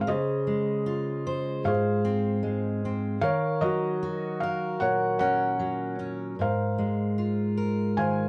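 Intimate and heartfelt, this short cut from a longer acoustic folk-pop ballad moves at an unhurried 76 BPM in a straight 4/4. A felt-muted upright piano carries the melody throughout, its tone soft and mellow, with the mechanical action noise of the instrument audible up close. Beneath it, a fingerpicked steel-string acoustic guitar supplies the accompaniment, sounding bright and full-bodied with the crispness of fresh strings and audible finger squeak. Both instruments sit up front, framed by a short, wet studio reverb that gives the pair a close, shared space. The harmony drifts from Dbmaj7 to Ebm7 at 3.2 seconds and settles on Ab69 at 6.4 seconds, lending the passage a tender, open-ended glow.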